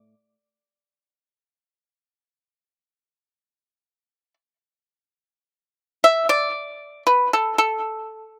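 Chinese traditional solo plucked-string music, flowing and elegant, moves in a free rubato around 52-60 BPM in this short cut from a longer piece. A lone pipa, played with fingerpicks, sits up front with a bright, percussive, dry attack spanning A2 to E5, touched by a slapback echo. Recorded outdoors with little reverb, the passage shifts into a new section at 5.5 seconds before breaking off at 8.4 seconds.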